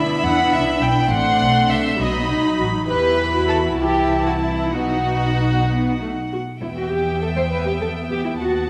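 This short excerpt from a longer piece opens with the full string orchestra sounding together from 0.0 s, a quick classical-period movement in E minor set in 6/8 at 66 BPM, its beats uneven and pulled by rubato toward a dramatic, stormy mood. High above, one violin section carries the melody while a second violin section plays a supporting line beneath it, both bowed sul tasto with light vibrato and a soft, intimate attack. The violas fill in the accompaniment with the same gentle, close touch, while the cellos add a dark, woody bass with fuller vibrato and the double basses anchor the bottom with a smooth-topped, shadowy tone. The harmony moves from Em through Am and B7, back to Em, then to Am/C and B, before a new section begins at 6.6 s on a return to Em. A generous concert-hall reverb with a 1.9-second decay surrounds the ensemble and lends the chamber-scale strings a sense of space until the passage is cut off at 8.7 s.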